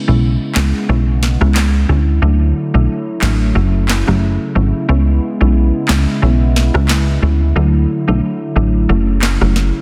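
A loping 90 BPM dancehall groove in 4/4 with a light 16th-note swing sets a sultry, hypnotic mood in C# phrygian, heard here as a short cut from a longer piece. The plucky analog bass sits up front from 0.1 s, punchy and funky with a fast, decaying filter pluck, while electronic handclaps, a sharp snare and rim clicks arrive at 0.6 s with a produced, tape-warm bite. A woody, round FM synth pluck with a mallet-like attack adds mellow accompaniment between F#3 and E4, softened by chorus. Underneath, a hollow, flute-like pad with a nasal, detuned edge holds sustained chords for the full 9.8 seconds, its soft attack also treated with chorus. The harmony circles through C#m7, Dadd9 and F#m7 twice, all set in light reverb and digital ambience within a dense, heavily limited modern master.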